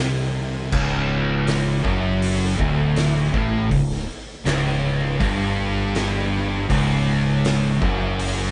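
A thick, dark fuzz guitar and a growling, overdriven fingered bass open this brooding stoner and doom metal excerpt together at 0.0 s, riffing low at a slow 80 BPM in straight 4/4. At 0.7 s a second, brighter distorted guitar joins up front with its own riff, and an oversized, low-tuned acoustic drum kit enters with crash, hi-hat, punchy kick and a fat snare. The harmony moves from a chordless opening to a Dmaj7/C# chord, lending the ominous mood a tense, unresolved weight. Both guitars are double-tracked, while the bass is punchy and bright with a direct-and-amped character. The drums sit in a bright stone room that pumps audibly, their dark cymbals set against the heavy low end. The whole band sounds as if playing live in one room with moderate studio reverb, and the top end is rolled off for a murky, close feel.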